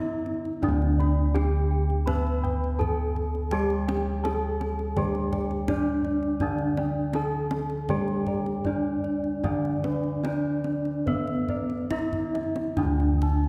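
A close, full bronze metallophone carries the melody up front, its ringing wooden-mallet tone shimmering from paired tuning in this serene, ceremonial Javanese gamelan excerpt cut from a longer piece. Set in D pelog barang and moving in a steady, straight 4/4 at around 68-83 BPM, the melody sits over a darker, smoother metallophone accompaniment in the lower register. Bossed gongs fill out the texture: one set plays high, bright arpeggios, while a boxy, warm set holds the bass with a beating resonance. A second metallophone, struck with a horn mallet, adds bright arpeggios from 0.6 seconds. The deep, dry kendang enters at 0.3 seconds and plays a drum fill at 12.1 seconds. The ensemble sounds heard from further back in a wet concert hall, giving the bronze tones a long, lingering reverberation.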